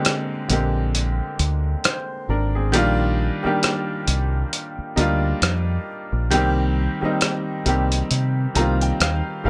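Contemporary R&B at a slow 67 BPM in 4/4, with a swung sixteenth-note feel that gives this short cut from a longer piece a late-night, sensual mood in C minor. A clear, slightly worn grand piano carries the harmony up front, moving from Bb13 to Ebmaj9/Bb and settling on Cm7, then plays a fill from 8.1 seconds to the close. A gritty, tape-tinged sampler-style drum kit of hi-hat and rim click sits close in the mix, compressed and re-recorded in a small room for a dusty soul character. At 0.5 seconds a deep, round fingered electric bass enters, dark and direct, holding the low end through the passage. Light reverb surrounds the parts, and the whole excerpt plays as a break.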